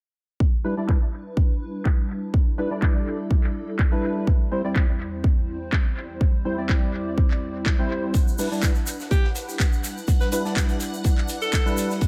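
Deep house with a smooth, deep mood, cut from a longer piece, built on a punchy, up-front electronic kick carrying a filter sweep and layered electronic handclaps with tape echo, under a hollow, warbling pad with 12-bit sampler grit and sidechain pumping, plus a mellow organ-like stab that also pumps and echoes. At 8.1 s a gritty, rolled-off breakbeat kit, a grainy, distant egg shaker and a shimmering string machine slip in behind. At 9.1 s a bright alto saxophone enters with light vibrato and scooped notes over the returning Em7, after the harmony has moved from Em7 to C/E and back, all soaked in an echo-heavy studio reverb.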